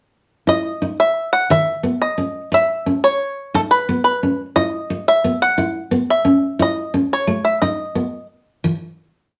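Highlife in a straight 12/8 at 118 BPM, this short, danceable piece sets a bright, twangy fingerpicked banjo playing percussive, song-like motifs up front over a full-bodied dreadnought guitar's fingerpicked ostinato, the pair playing live together in a roomy studio reverb through chords of E5, C#m, B and A until the banjo stops at 8.3 seconds and the guitar rings on to 8.7.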